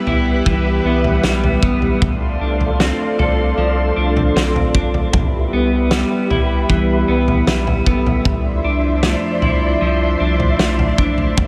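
A loose, roomy indie drum kit with a fat snare and punchy kick and a deep, saturated sub bass together carry an unhurried straight 4/4 at 77 BPM in this blissful, dreamy dream pop excerpt. Up front, a vintage string machine cello patch holds dark, warbling sustained chords through Cmaj7, F6/C and Dm9/C, while a clean, picked electric guitar weaves arpeggios through subtle chorus and digital delay. From 3.6 s a very quiet vibraphone struck with hard mallets adds metallic, ringing texture within light reverb and small room ambience.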